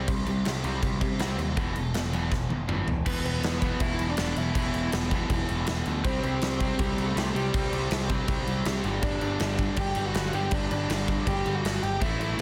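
A driving, straight 4/4 pulse at 161 BPM propels this energetic, rebellious punk rock excerpt, with an up-front big-room drum kit (punchy kick, medium-tuned snare, bright cymbals) joining almost at once and a drum fill at 2.3 seconds leading into the second section. Two picked rhythm guitars hold the riff in the background, one tight and distorted, the other warm and compressed, over a growling, overdriven picked bass, while the harmony moves through C5, E5 and G5 power chords. At 3.1 seconds a dark lead guitar through a small cranked amp takes up the melody, all set in a dry, dense and heavily limited modern master.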